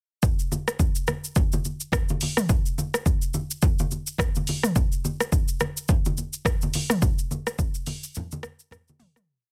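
Breezy and romantic, this short afrobeats piece rides a lightly swung sixteenth-note feel in 4/4, built entirely from drums and percussion. A deep house drum kit sits up front with a punchy, overdriven kick, its electronic, layered sound carrying hi-hat, rim click, shaker and toms through a syncopated afrobeats groove. Beneath it, low-tuned congas with a thick skin and hard hands add an acoustic, close texture in an interlocking pattern. The sound is dry and dense, with a heavily limited modern master. A fade-out begins at 7.0 seconds, and a break arrives at 8.2 seconds before the piece closes at 9.3 seconds.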